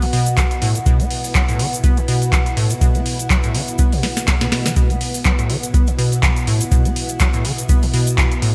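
Raw and driving, this short cut of acid house rides a swung 4/4 groove with a bright 1980s-style digital sheen and light reverb. A squelchy, hollow square-wave acid bass carries the riff, resonant and filter-swept with a fast, decaying attack, roughed up by overdrive, analog chorus and delay, and pumping against the kick. Alongside it, a lush vintage string machine holds sustained sawtooth chords with a sub octave and a slow attack, its ensemble chorus also pumping. A booming analog drum machine supplies handclaps, metallic hi-hats and a tonal snare under gated reverb, joined at 0.4 s by a deep, tape-warm electronic kick drum placed up front, with a drum fill from 4.0 to 4.8 s. A grainy, close egg shaker adds acoustic texture, while a warbling, nostalgic lo-fi pad, detuned and wave-folded, sits dark in the background with chorus and a long release.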